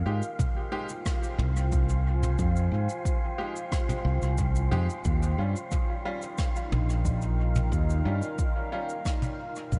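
A deep, detuned ambient pad with chorus and a breathy, wind-like tuned noise texture open this meditative, spacious ambient dub fragment in F minor at 90 BPM, joined within the first half second by woody, slightly detuned upright piano stabs trailing dub echo, an up-front fingered electric bass, a jazz brush kit of cabasa, rim click and toms, and a punchy overdriven electronic kick, as the harmony shifts from Fm7 to Eb7 at 5.1 seconds before a fade-out begins at 8.6 seconds.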